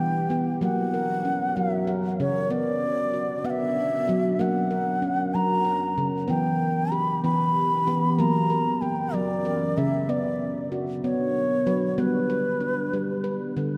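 World meditative music built around tuned percussion, this gentle, contemplative excerpt moves at a slow 63 BPM in a straight 6/8, set in F# Phrygian dominant. A mellow bamboo bansuri carries the melody up front, its airy, tongued phrasing shaded with expressive vibrato and trailed by a diffuse ambient delay. Beside it, a handpan of nitrided steel plays ringing arpeggios with sharp finger strokes, its tone bright and close. Beneath them, a deep, dark ambient pad holds sustained chords with a slow attack and long release, its detuned sawtooth unison and sub octave given body by chorus and its own reverb. The harmony cycles through Em, F# and Bm before closing on G near 12.0 seconds, and a wet church reverb with a 3.4-second tail surrounds the whole performance in a spacious, hushed atmosphere.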